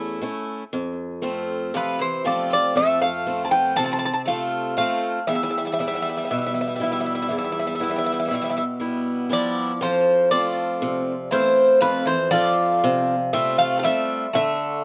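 Dry and close, recorded outdoors with a dulled top end, this dark, wistful fragment of Greek bouzouki-band folk in 9/8 opens on a bright, boxy picked swing-style acoustic guitar accompaniment up front, joined at 1.7 seconds by a lower double-strung bouzouki second line with slapback echo and at 1.8 seconds by a prominent, metallic lead bouzouki melody with octave-doubled strings ringing above, before the music moves into a new section at 9.8 seconds.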